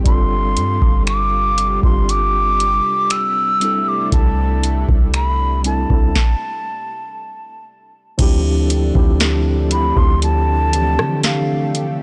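A hollow, airy jazz flute carries the longing melody up front, its tongued straight tone trailed by delay, in this moody contemporary R&B fragment cut from a longer piece. Beneath it, a mellow tine electric piano and a lush, thick, detuned pad with chorus move from G9sus4 to C69, while a deep, boomy 808-style bass and a booming, dry analog drum machine with crisp, softly clipped snare, metallic hats, finger snaps and rim clicks anchor the groove. After a stop from 6.2 to 8.2 seconds, the music shifts to Dm11, all captured in a blown-out, overdriven recording with a top end that stops around 10.6 kHz and little room sound.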